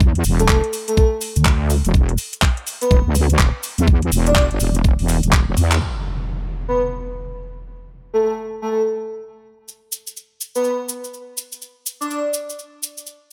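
Swung sixteenths in four drive this swaggering, gritty bass house excerpt, where a knocking, tape-warm electronic kick and a garage kit of metallic filtered hats, handclaps and crash cymbal sit up front beside a heavy, saturated, sidechain-pumped wobble bass holding a single chord, with a grainy acoustic cabasa underneath. A soft, airy lead with chorus, delay and vibrato floats above from 0.4 s. The kick falls away at 5.4 s, and after a drum fill and a band accent, the bass and kit drop out at about 5.8 s as an electronic impact lands, leaving the dreamy lead to carry on in a dry mix, joined again later by the cabasa.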